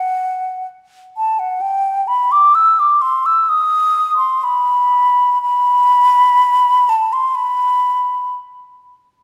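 Classical music for unaccompanied concert flute, this short fragment of a longer piece feels yearning and meditative, moving in a free, rubato 4/4 at roughly 59-67 BPM. The solo flute plays from 0.0 to 8.3 seconds, staying in a high register between F#5 and E6. Its tone is pure and hollow, with vibrato, a soft attack and lifted highs that keep the sound mellow rather than piercing. The flute sits up front, surrounded by a moderate concert hall reverb that lingers for about 2.1 seconds.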